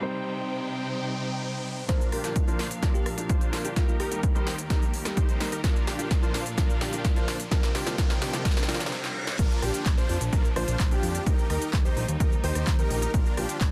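A straight 4/4 pulse at 128 BPM drives this triumphant, anthemic slice of festival progressive house in Bb major, cut from a longer piece, with an up-front, punchy electronic kick and a layered big-room kit of crisp hats, punchy snare, handclaps, rim clicks, shaker and crash, re-recorded in a small room and filtered. It opens on a soft, felt-muted upright piano and a clear, bowed studio string section holding sustained chords, both pumping with sidechain, while background risers, a reverse cymbal and a downlifter sweep beneath. At 1.9 s the drums arrive with a huge, detuned supersaw riff that is thick, compressed and low-pass filtered, and a sparkling, bell-like FM electric piano briefly carries the melody through chorus, cassette-tape colour and delay. The build-up moves through Cm, Bb and Eb with a long drum fill and a short break, and the drop lands at 9.4 s. There a fat analog bass with a filter sweep and a dark, boxy baby grand playing arpeggios, its action noise audible, join the pumping mix. 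The sound is dense and heavily limited, set in a digital ambience.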